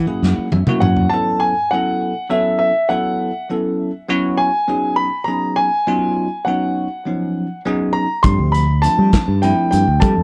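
A driving 6/8 pulse at 67 BPM opens this funky electric jazz fusion excerpt, where a modern studio drum kit with a punchy kick and a bell-like, chorus-laden tine electric piano both fill in the first second before the drums and the saturated fretless bass drop out at 1.1 seconds, leaving the intimate grand piano's high melody, with its audible action noise, to float over the electric piano's sus4 ninth chords until the rhythm section returns at 8.2 seconds, all in a small room ambience.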